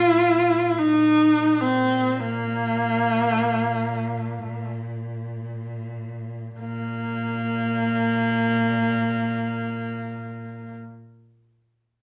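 A generous, wet studio reverb surrounds this short cut from a longer Mongolian folk piece, played live by two musicians in one large room and tuned to A4 = 435 Hz. In free time, the mood is proud and galloping, though the pace slows from 0.9 to 6.6 seconds, where a second passage begins. Up front, a single bowed horsehead fiddle carries the melody on its horsehair strings between Bb3 and F4, its tone clear and focused with a husky edge, shaped by vibrato and portamento. Beneath it, a single dark cello sits close, holding a quieter bowed drone on Bb2 and colouring it with expressive vibrato and portamento. Both parts sound together for the full 10.8 seconds.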